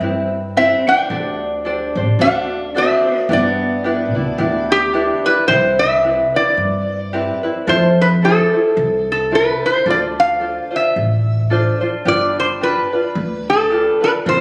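Heard as if through a phone in a club, this sunny, relaxed Hawaiian excerpt carries a moderate recital-hall reverb and noticeable compression. At a swung 110 BPM in 4/4, it opens in G major and moves to C major at 5.5 s, with chords such as Cmaj7, D7 and G6 giving way to Fmaj7, Dm7 and G7. The metal-body resonator slide guitar carries the melody up front, its fingerpicked tone metallic and nasal, sitting between G4 and G5. A picked acoustic archtop guitar adds a boxy second line with audible finger squeak, dropping out at 4.9 s. A light, fingerpicked tenor ukulele keeps the accompaniment close and present throughout. Underneath, a pizzicato upright bass on steel strings supplies a woody, thumpy low end.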